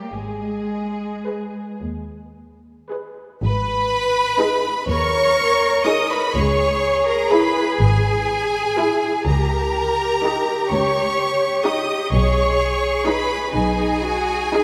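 Classical slow romantic movement for string orchestra in G# minor, elegiac and melancholic, moving at a rubato 34-43 BPM in 6/8, where a clear, focused second violin line, lush vibrato cellos and smooth, even double basses open the passage before an expressive, up-front violin melody and distant violas join at 1.3 seconds, all bathed in a concert-hall reverb.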